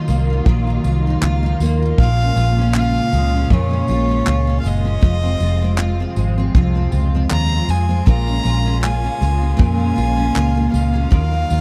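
A dry, close 1970s-style studio sound frames this tender, wistful acoustic pop excerpt, where a nasal, reedy solo violin carries the melody over a full-bodied, double-tracked picked steel-string guitar, a round, foam-muted fingered electric bass, soft brush drums with a punchy kick, handclaps and tambourine, and a smooth string section holding sustained chords with vibrato and portamento in the background.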